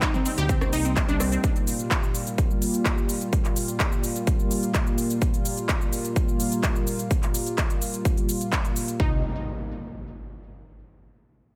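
Expansive and dreamy, this short progressive house passage moves at 127 BPM in a straight 4/4 in C minor, cut from a longer piece. A smooth sawtooth pad with a sub octave sits up front, holding sustained chords from Cm7 to Gm7/Bb and back under chorus and sidechain pumping. A bright, lush unison pluck spins detuned arpeggios through phaser and delay in the opening seconds, while a fat, detuned bass adds thick low notes beneath it, both returning briefly at 9.0 s. The drive comes from an overdriven, punchy electronic kick out front and a layered dance kit with handclaps, shaker and crisp hats, joined early on by a tape-warm drum machine playing congas, rim clicks and toms in the background. At 9.1 s an electronic impact enters, closing the passage in a light reverb.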